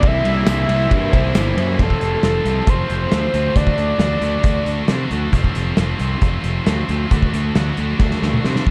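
A screaming, wave-folded synth lead carries the melody until 5.1 s in this wistful, jangly indie rock excerpt at 135 BPM, over a round fuzz bass, a scooped high-gain guitar riff and a loose drum kit with a punchy kick and a rolled-off top that ends on a fill at 8.0 s, while a faint string-machine cello pad, a background garage guitar with chorus and tape echo, a distant tambourine and a mellow phased electric piano colour only the first 1.8 seconds, inside a dark, dry production.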